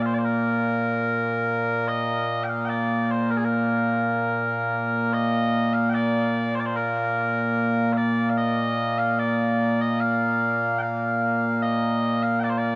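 In a straight 2/4 pulse, this proud, stirring fragment of Scottish traditional pipe music features mellow, sweet small bagpipes playing solo and up front in a continuous line from the opening to 12.8 seconds, the same strain heard twice within a huge, dark ambient space whose long reverb tail lingers around the tone.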